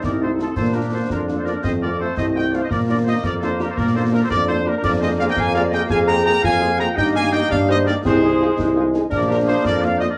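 This cut from a longer wind-band march opens in a moderately reverberant studio space, with a dark, smooth-topped trumpet section carrying the melody up front and a warm, vibrato-rich tuba anchoring the bass just as prominently. The piece moves at 112 BPM in a straight 6/8, spirited and rousing, in Bb major with a military character. Behind the trumpets, a mellow, distant woodwind section and a warm, distant euphonium share the second line, while a clear trombone section holds sustained chords from further back in the room. A punchy French horn section joins with accompaniment at 0.2 seconds, and close-miked concert snare, bass drum and dark-toned clash cymbals drive the march from start to finish. The harmony circles around Bb and F before stepping through Eb/G and Ab/C and settling back on Bb at 9.1 seconds.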